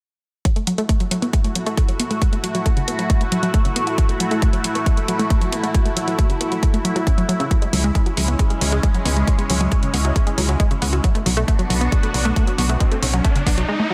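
A driving, euphoric uplifting trance passage opens with a thick, detuned sawtooth pad holding slow-blooming chords with chorus and phaser, a bright unison pluck arpeggio carrying dub echo and a filter sweep, bright electronic hi-hats, and a punchy, up-front kick, with the pad and pluck pumping against the kick. At 7.7 seconds a round, mellow FM bass with tube saturation joins, also pumping, as the chords move from F#m7 to C#m and Bm. At 12.1 seconds an electronic riser enters, all set in light digital reverb.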